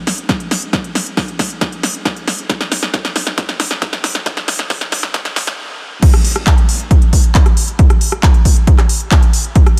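A straight 4/4 pulse at 136 BPM drives this emotional, driving trance fragment, cut from a longer piece, where a layered electronic drum kit of punchy snare, smooth sidechain-pumped hi-hats and crash cymbal, handclaps and rim clicks rides a fill and filter-swept build-up over an up-front punchy kick, halts briefly at 5.6 seconds, then drops at 6.0 seconds into a dense, heavily limited modern mix touched with light reverb and small-room ambience.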